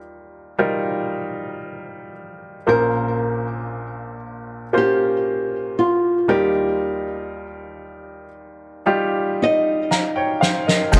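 A slow, straight 4/4 pulse at 58 BPM carries this tender, emotional pop ballad, cut from a longer piece. A small, thumb-plucked nylon-string guitar leads the melody with audible finger squeak and a touch of delay, while a woody upright piano with short sustain supports it from close up, both moving between Ebadd9 and Bbmadd9. At 9.9 seconds a loose indie drum kit breaks in with a fill, its punchy kick, fat snare and dark cymbals set in a pumping studio room. At 10.9 seconds a thick, saturated sub bass lands up front on a deep F1, joined by a glassy, ethereal glass harmonica holding very quiet chords and a grainy tube shaker in the background. Light, small room reverb keeps the sound intimate.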